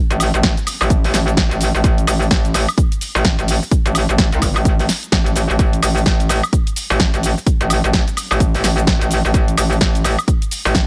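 A metallic wobble bass and a house drum kit open together at the start, the bass growling low between G1 and C2 with an aggressive, FM-bright edge pushed up front. This gritty, bouncy bass house cut runs at 128 BPM in 4/4, its sixteenths swung at 60%. An electronic kick drum lands at 0.4 seconds, punchy and tape-warm, while the bass pumps with sidechain compression and distortion, overdrive and chorus thicken its wobbling, sustained tone. The drum kit sits forward too, with a punchy snare, bright hi-hats, cabasa and woodblock adding detail. The sound is dry, with little reverb, in a short cut lifted from a longer piece.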